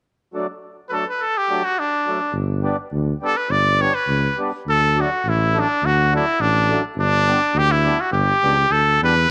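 Alpine folk in a festive, jolly spirit, this short excerpt moves in a lightly swung two-beat metre. A reedy, dark accordion opens the texture at 0.3 seconds, laying down a smooth, full accompaniment beneath the tune. A brilliant trumpet takes the melody from 0.9 seconds, played in a classical style and sitting up front as the clear solo voice. A mellow tuba joins on the bass line at 2.3 seconds, also classical in manner and placed forward, its tone carrying a light vibrato. The harmony alternates between D and G across two short sections, while a moderate spring reverb lends the whole blend a gently ringing space.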